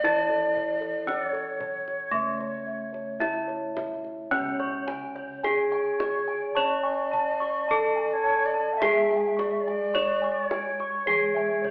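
A bright bronze metallophone struck with a horn mallet carries the melody up front in this stately, hypnotic Javanese gamelan passage, cut from a longer piece, with a breathy, tongued bamboo xiao adding a vibrato-laden second line. Beneath them sit a soft, mellow metallophone accompaniment played with padded disc mallets, round bossed gongs playing arpeggios in the background and a beating gong bass, while a kendang struck with hard hands sounds tight and close. At 4.3 s a dark, smooth metallophone with shimmering paired tuning joins with arpeggios, and the ensemble plays live in one room with a heavy large-studio reverb and a telephone-like sound.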